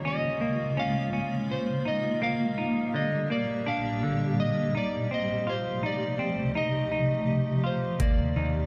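Dream pop at 83 BPM in Eb lydian, dreamy and floating, this short section from a longer piece drifts through Db6, Ebmaj7 and F7 under a moderate shimmer reverb with a long tail. A bright, blurred granular cloud pad holds evolving chords while a dark, hollow-bodied semi-hollow guitar plays clean fingered arpeggios with subtle chorus and digital delay, and an electric slide guitar sings a slightly broken-up melody between C5 and F5 through its own delay. At 8.0 s a punchy picked bass lands on Eb2 and an overdriven, booming analog drum machine hits a deep kick and metallic hats, re-recorded in a small room.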